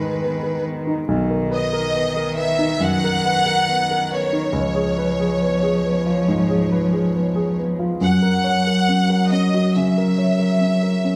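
A bowed violin section, a single cello and a grand piano begin together in this hopeful, intimate neoclassical passage, moving with a gentle rubato through chords from G#m to Bmaj7, C#7 and F#. The violins carry the melody with a smooth, symphonic vibrato, the cello adds an airy second line played sul tasto with soft attacks, and the dark, mellow piano accompaniment sits up front with short sustain. Close, detailed microphones capture the players within a recital hall's reverb in this brief fragment cut from a longer piece.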